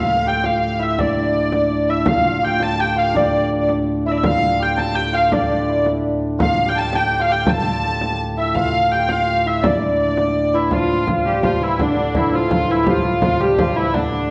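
A smooth, even hurdy-gurdy carries the melody up front in this driving, ancient-sounding medieval dance, its wheel-bowed tone strangely distant despite its prominence. The music moves in 6/8 at 111 BPM, counted in dotted quarters, with a straight feel in D minor and tuning set at A4 = 441 Hz. Behind it, a reedy tenor recorder with an airy chiff sits in the background on a second line, alongside a shimmering, ringing hammered dulcimer, while a soft chamber organ on flute stops holds a low drone. A deep, large frame drum, close and dry under hard hands, enters at 0.3 s and keeps the dance pressing forward. The piece shifts into a new section at 10.7 s before this excerpt, cut from a longer work, ends at 14.3 s. A wet recital hall reverb surrounds the ensemble, and the recording carries the worn, warbling pitch drift of old cassette tape.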